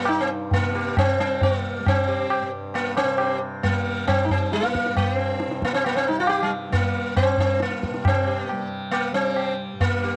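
Indian classical Hindustani music in a meditative, solemn mood at 136 BPM in 7/4, this brief cut from a longer piece places a bright, plectrum-plucked sitar up front, its buzzing sympathetic strings ringing above a softly plucked tanpura drone that shimmers lower in the mix, with a close, low-tuned tabla adding resonant percussion, set in a light studio reverb.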